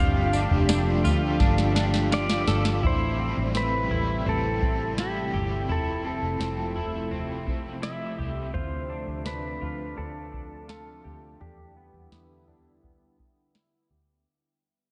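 A soft vintage rhythm box with a deep kick, crisp snare, tambourine and toms sets a straight 84 BPM pulse in 4/4, rolling through a fill from 1.4 to 2.8 s, beneath a round, punchy, foam-muted fingered bass in A minor. This haunting, ethereal dream pop excerpt pairs a thick, detuned sawtooth pad with a semi-hollow guitar picking bright, clean arpeggios through chorus and tape echo. An overdriven stack guitar with tremolo and ensemble chorus plays until 8.6 s, while a fingerpicked pedal steel slides through a compressed, echoing melody, and the whole mix is soaked in cathedral reverb as a filter sweep and fade-out carry the chords from Am7 through Fmaj7 and Dm7 to Em7.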